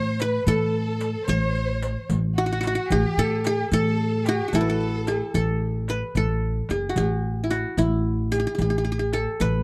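Dry, dark production frames this passionate, stately Arabic maqam ensemble piece in 6/8, with a bright, plectrum-plucked qanun melody up front over woody pizzicato upright bass, an expressive bowed violin section with vibrato carrying a second line until 5.3 seconds, a crisp metal-shell darbuka in the background and a very quiet, compressed riq.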